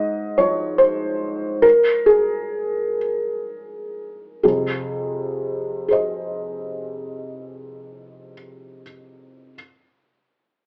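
In a rubato 6/8 at 40-50 BPM that slows through the first 4.4 seconds, a lone felt-muted upright piano, soft and intimate with its action noise audible up front, plays a wistful, melancholic neoclassical minimalist passage in F minor, tuned to A4 = 443 Hz, moving from Fm/Ab to Fm7 at 4.4 seconds across a range of F2 to Eb5, all heard through light reverb in a live-room, AM-radio sound on this short cut from a longer piece.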